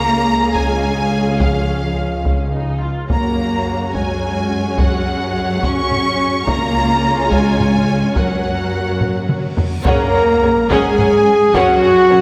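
A slow 6/8 pulse at 71 BPM drives this heroic, adventurous orchestral film cue in F# major, a short cut from a longer piece, with a close, dry taiko ensemble struck with hard sticks beneath lush bowed strings: a clear, intense violin melody over a darker, woody second violin line, expressive violas, smooth cellos and woody double basses, all set in a concert hall reverb. A French horn section holds warm sustained chords in the background as the harmony moves between C# and F#add9. A drum fill from 9.0 s leads into a huge, bright reverse cymbal and sub drop, and at 9.9 s punchy, roomy trumpet stabs and a very quiet, hollow, airy flute ensemble join on the closing F#add9.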